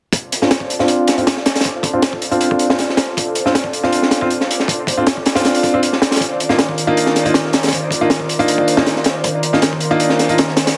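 A straight 4/4 breakbeat drives this frenetic, raw drum and bass and jungle cut at 158 BPM in D phrygian, taken from a longer piece. The crunchy acoustic kit of kick, snare and hi-hat sits up front, gritty and saturated, with a high-tuned snare, a tight kick and a rolled-off top; high-pass filters thin each drum and the small-room sound. Underneath, an airy, breathy pad holds sustained chords from Eb3 to D5, blending detuned sawtooth and triangle tones with a noise layer, a slow attack and a long release, all treated with chorus and phaser. A bright grand piano, brilliant and vintage with long sustain, plays stabs between Bb3 and F4 through a low-pass filter and dub echo, with a filter sweep running across its part. The harmony moves from Dm7 to Cm11 at 6.2 seconds, and the mix carries a moderate plate reverb, studio ambience and a heavily compressed, radio-like sound.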